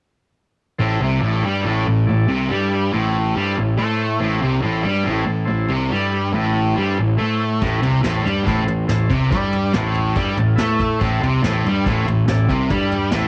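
A bright, double-tracked fuzz guitar riff sits up front in this swaggering, menacing garage rock excerpt in A minor at 141 BPM, alongside an overdriven, fuzz-soaked picked electric bass and buzzy, clean sustained chords from a vintage combo organ with a cassette-tape tint, while a distant, roomy brush drum kit with a punchy kick and high-tuned snare enters at 7.6 seconds and the organ slips in a brief fill at 10.2 seconds, the whole performance captured in small home-recorded room ambience.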